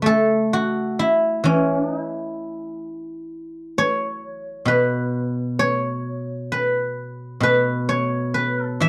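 Elegant and pastoral, this brief rubato fragment of Chinese traditional music features a solo guzheng, mellow and silvery under fingerpicks, ringing up front across its range in a close, dry 1970s-style studio sound touched with moderate reverb.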